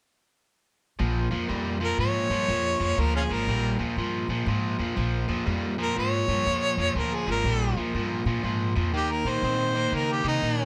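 A lightly reverberant blues excerpt with a gritty, swaggering mood, swinging at 121 BPM in 4/4 as a bright, overdriven, crunchy electric guitar riff and a woody pizzicato upright bass start together at 1.0 seconds over Bb7 before moving to Eb7 at 8.9 seconds. At 1.8 seconds a warm harmonica steps up front with a jazz-style solo, full of vibrato, tongue slaps and scooped notes, while the picked guitar stays forward in the mix beside it.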